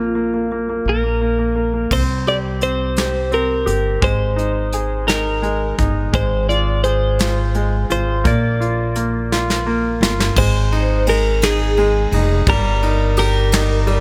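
A romantic, tender pop ballad in six-eight, cut from a longer piece, where a clean, picked twelve-string electric guitar with phaser carries the melody over bright, polished concert grand piano chords and a woody, growly pizzicato upright bass, while a soft brush drum kit enters at 1.9 seconds and plays a fill from 9.3 seconds, all set in light reverb and small room ambience.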